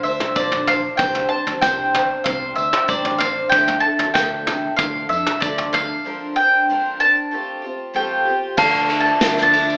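A warm, up-front bowl-back mandolin carries the melody from the start over a shimmering, octave-doubled twelve-string acoustic guitar, with a fingerpicked steel-string guitar barely audible in the first second. This wistful, bittersweet indie folk moves at 95 BPM in D minor through chords such as Bbadd9, Csus2, Dmadd9 and Fadd9, supported by a soft brush kit with a punchy kick, a dark, round hollow-body bass in the background and a very quiet, jingly tambourine, all set in a roomy live-band space with a moderate large reverb and an AM radio sound. At 8.6 seconds a sparkling, bell-like glockenspiel joins on a second line, and a clear, floating string section adds sustained chords, as the building arrangement opens into a new section.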